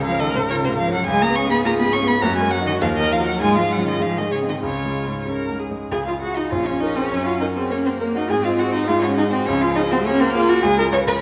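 This quick classical-period movement for piano quartet is a lively, graceful fragment in Db major. It moves at 102 BPM in 2/4 with a flexible rubato feel, tuned slightly below modern pitch. A single violin carries the melody up close, its soft attack, vibrato and expressive portamento giving the line a singing quality. A dark, woody cello sounds the second line from a distance, while a rich viola, also distant and bowed with vibrato and portamento, fills out the accompaniment beside a polished grand piano placed up front with short sustain. The opening phrase is restated from 5.9 s, with harmony that moves through Bbm, Gb and Ab7 before settling back on Db. The whole quartet sits in the generous, wet reverb of a scoring stage.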